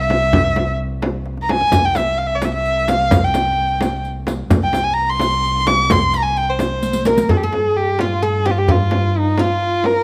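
A stately, festive Persian modal ensemble piece in C dastgah homayun, cut from a longer work, moves at 86 BPM in a straight 6/8, with a rich, boxy bowed kamancheh carrying the melody up front, its smooth, even line colored by vibrato and portamento. Beneath it a bowed double bass holds a reedy gut-string drone, while a small, bright, saturated frame drum struck with hard hands plays alongside a deep, dry tombak, played with soft hands, that sits in the background. They are joined at 1.7 seconds by the jingles of a riq that drops out at 7.3 seconds as a new section begins. At 7.1 seconds a woody, plectrum-plucked fretless oud with double strings slips in behind as a second line, all captured with close, detailed microphones and light reverb.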